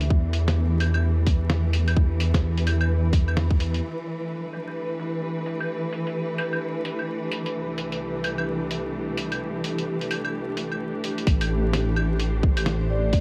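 A light, digital reverb and a steady bed of vinyl crackle frame this rainy, ghostly future garage excerpt, cut from a longer piece and moving at 129 BPM in 4/4 with a swung sixteenth-note feel. Muted, con sordino studio strings carry the harmony throughout, their veiled, lush bowed chords pumping against the sidechain as the progression moves from Em7 to Cmaj7 and settles on Am7. A deep, rumbling detuned saw bass and a tight, up-front electronic kick anchor the opening, then, after a brief band accent, the kick drops away at 3.6 seconds and the bass at 3.8 seconds, while a filter sweep plays over the drums. Through this stretch, the compressed, pitched-down sampler kit keeps ticking with muffled claves, hi-hat and a fat snare, all softened by low-pass filtering. The bass and kick return at 11.3 seconds. At 12.8 seconds a mellow vibraphone, played with soft mallets, rings briefly in the background through a tape echo.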